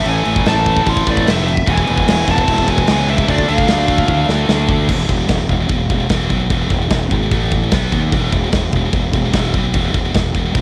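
A straight 4/4 pulse at 149 BPM drives this heavy, epic metal excerpt, captured as a home recording on cassette with a studio-room ambience. A dark, distorted lead guitar carries the melody in the opening seconds, ending at 4.3 s, while two bright, picked high-gain rhythm guitars churn out the riff, one of them set back in the background and dropping out at 4.9 s. Up front, a growly fingered electric bass with fuzz and overdrive anchors the low end through the whole clip. The acoustic drum kit sounds airy and polished, with bright cymbals, a medium-tuned snare, a punchy kick and toms, and it plays a fill from 4.1 s that leads into a second section. The harmony moves from A5 through E and D minor, then shifts to power chords on E5, A5 and B5.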